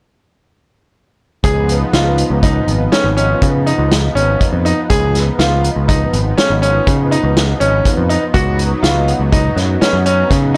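A growly picked electric bass sits up front with transformer saturation, anchoring this intricate, bright progressive instrumental in 7/4 as the full band enters together at 1.4 seconds. A brilliant, polished grand piano plays short-sustained arpeggios over a silky, evolving analog string pad with ensemble chorus, while a vintage acoustic drum kit with a punchy kick, a medium-tuned snare and a pumping small-room sound drives the hi-hat, kick and snare. The chords move from Db7 to Cb/Db at 8.3 seconds, and the whole excerpt carries light reverb in a blown-out, overdriven recording.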